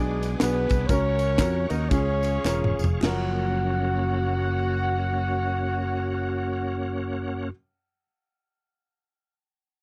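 A dark horn section carries the melody up front in octave doubling with a light vibrato, in an uplifting, hopeful uptempo gospel cut in F# major that swings in 4/4 at 100-130 BPM and slows down over the first 3 seconds. A woody upright piano sits in the background, a reedy tonewheel organ holds sustained chords through a slow rotary speaker and chorus vibrato, and a fingered electric bass plays prominently underneath. A tight funk drum kit with bright cymbals and a high-tuned snare, joined by background tambourine and handclaps, plays a fill at 2.5 seconds and drops out by 3.4 seconds as the harmony settles on F#maj7, all in a dry, close 1970s-style studio sound.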